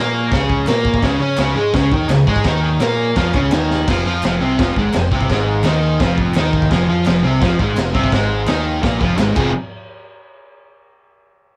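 Swaggering and menacing, this short garage rock cut from a longer piece drives along at 169 BPM in F minor, led by an up-front, double-tracked overdriven semi-hollow guitar riff over a dark, round fuzz bass and a raw drum kit whose saturated, gritty sound carries cassette tape coloring and a pumping small-room feel. A buzzy vintage combo organ holds sustained chords in the background through a lush chorus, while very quiet, distant group handclaps enter at 0.7 seconds. A drum fill at 3.7 seconds leads into a move to F minor at 3.9 seconds, and the home-recorded cassette sound sits in light reverb.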